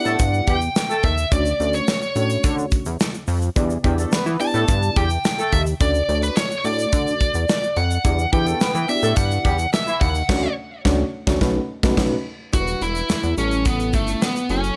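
Early-eighties boogie funk with a danceable, funky mood, this excerpt from a longer piece moves in a straight 4/4 over a chord cycle that shifts between Em7 and Dmaj7 before touching B9 and A7. A smooth, overdriven lead guitar carries the melody up front, its picked tone bright and trailed by tape echo. Beneath it, a mellow FM electric piano supplies soft, round, chorused accompaniment with a dark noise-tinged edge, while a distant, roomy horn section plays a second line with light vibrato until about 10.1 seconds. A retro, glossy synth bass built from pulse and sawtooth waves, with a plucky filter and chorus, sits up front alongside a modern studio kit of tight kick, medium-tuned snare, hi-hat, crash and bright cymbals treated with gated reverb. A grainy egg shaker ticks in the background, the band hits an accent from 10.3 to 12.5 seconds, and the whole mix stays dry and close.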